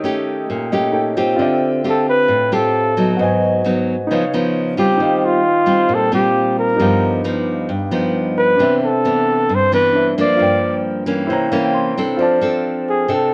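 A straight 4/4 bossa nova groove at 133 BPM sets a breezy, relaxed mood in this fragment of a longer piece, as a fingerpicked nylon-string guitar, up front with audible finger squeak, and a clear concert grand piano with deep bass and long sustain, adding fills at 0.5 and 11.3 seconds, accompany a breathy flugelhorn that enters at 1.9 seconds with a jazz-styled solo melody full of light vibrato and scooped notes, set in plate reverb within a moderate studio room over jazzy chords that move from Eb7#11 to a closing F6.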